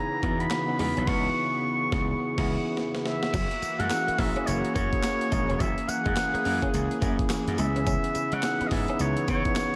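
Set in a big arena sound with a lush hall reverb, this bouncy, slick new jack swing excerpt from a longer R&B piece puts a distant, vibrato-tinged oboe melody up front, colored by digital delay and slapback echo. A bell-like tine electric piano, a detuned sawtooth analog pad with chorus and tremolo in the background, and a very quiet, clean direct guitar riff move over C#m7 and F#7, while an overdriven, punchy slap bass and a compressed, pitched-up breakbeat kit with thumpy kick, handclaps and tambourine carry a swung groove. A band accent from 1.1 to 3.3 seconds closes with a drum fill before the second section begins at 3.3 seconds.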